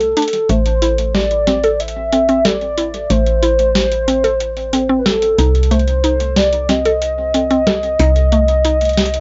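A straight 4/4 pulse at 92 BPM from a booming, overdriven analog drum machine with crisp snare and metallic hats drives this glitchy, intricate IDM fragment in A minor, where a woody, round FM bass sits up front beneath a warbling, nostalgic lead of detuned triangle and sawtooth tones with lush chorus, tape echo and vibrato, while a mallet-like, nasal synth pluck spins arpeggios from 0.2 to 8.8 seconds through chorus and analog delay, the harmony shifting from Am to Cm at 5.4 seconds, all of it captured on cassette in a small booth for a muffled, homemade sound.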